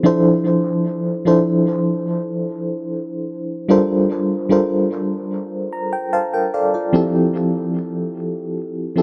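In a straight 4/4 feel, this romantic, dreamy R&B excerpt features a solo FM electric piano with tremolo, its dark, full-bodied tone carrying a noise layer and sitting up front in an echo-heavy mix with tape echo and light reverb, moving from Dm9/F to Gm11 with a fill from 5.3 to 6.9 seconds before settling on Fmaj7.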